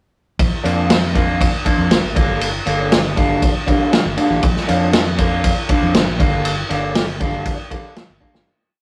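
A rough rehearsal-room recording with tube saturation and moderate studio reverb frames this trippy, dark psychedelic rock piece in G minor, grooving at 119 BPM in a straight 4/4 from 0.4 seconds as the harmony alternates between Bb and Gm. An up-front vintage drum kit with a punchy kick, medium-tuned snare and dark ride cymbal plays alongside a round, fingered electric bass playing a syncopated riff. Above them, an electric guitar through a small old amp adds twangy, slightly broken-up short syncopated chords coloured by a phaser, before the piece fades out from 6.4 seconds with a drum fill at 8.2 seconds.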